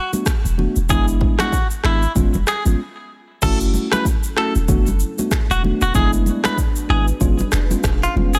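Afrobeats in F# minor at 95 BPM with a swung sixteenth-note feel, this smooth, mellow clip sets a bright, twangy clean electric guitar melody with digital delay over a mellow tine electric piano, an up-front electronic afro-pop drum kit with a deep kick, finger snaps, rim click, shaker and crash, and a punchy sine sub bass with a pitch-drop attack. Damped, thick-skinned congas sit close and dry in the background, and after a short break at 2.8 seconds, a moody, detuned ambient pad with chorus and built-in reverb enters quietly at 4.2 seconds beneath the F#m7, Bm7/F#, E7/F# and C#7 changes. The overall sound is dry, cut from a longer piece.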